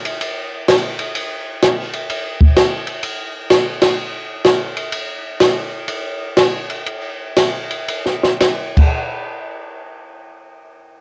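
A compact cocktail drum kit, dry and up front with dark cymbals, a high-tuned snare and a tight kick, plays crash, hi-hat, ride and kick through this bluesy, greasy swung jazz fragment in 4/4 at 108-127 BPM, easing into a slowdown from 4.9 to 9.0 seconds and stopping at 8.9 seconds, all heard through the cassette grit of a home recording with a moderate spring reverb on this piece cut from a longer one.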